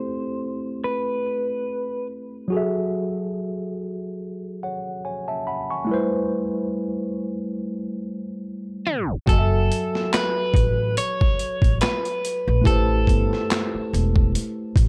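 A worn, slightly out-of-tune tine electric piano opens this hazy, melancholic lo-fi hip hop excerpt in F# minor at 71 BPM, its clean, direct tone sitting up front under cassette-tape coloring and a low-pass filter, while a picked, slightly broken-up electric guitar carries the melody briefly before falling away at 2.1 seconds. The chords move between Am7 and F#m7 as a filter sweep runs through the opening section, and the guitar returns at 8.9 seconds just as a tape stop hits. At 9.3 seconds the groove arrives with a gritty, compressed sampler-style boom bap kit, with thumpy kick, medium-tuned snare, hi-hat and handclaps re-recorded in a large room and placed up front, swung at 55% on the sixteenths. A woody pizzicato upright bass with steel strings enters alongside, anchoring the low end. The production is dark and warm with light reverb, and the guitar stops at 14.3 seconds while piano, bass and drums carry on.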